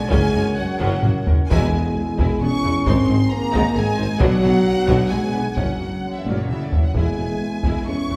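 Heard from further back in a wet recital hall, this triumphant, heroic cut from a longer epic orchestral film score moves at 132 BPM in 3/4 in E mixolydian, tuned to A4 = 445 Hz. A clear, intense violin section carries the lush, vibrato-rich melody, while a second violin section with portamento plays a second line in the background, joined by a pure flute ensemble that sounds only until 1.3 seconds. Dark French horns and a hollow stopped-flute pipe organ hold sustained chords over smooth violas, cellos, double basses and a very quiet tuba, as a taiko ensemble struck with heavy sticks drives the music with fills and a band accent at 1.5 seconds, where round, soft-malleted timpani enter.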